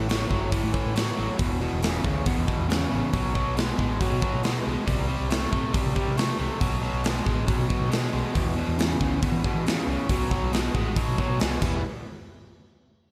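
A smoky, brooding blues rock and southern rock excerpt in a straight 4/4, where a crunchy, double-tracked overdriven guitar riff with slapback echo sits up front over a dark, round hollow-body bass and a big acoustic rock kit with a punchy kick and bright cymbals, all bathed in a lush hall reverb for a big arena sound until the parts stop around 11.8 seconds.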